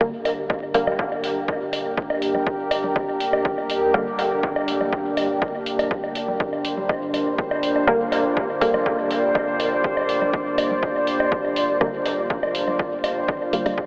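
Dub techno in G minor at 122 BPM, this deep, hypnotic excerpt holds on a single G minor chord. A moody, detuned sawtooth pad sits up front with chorus and sidechain pumping, beside a punchy analog kick, a bubbling resonant texture of random filter steps, and a clean sine sub bass far in the background. Muted, detuned dub chord stabs with phaser and dub echo appear at 0.0, 3.9, 7.9 and 11.8 seconds, while a tape-tinged hi-hat and echoing woodblock and congas from a large room enter at 0.3 seconds, all in a dreamy mix soaked in huge reverb with vinyl crackle and a telephone-like tone.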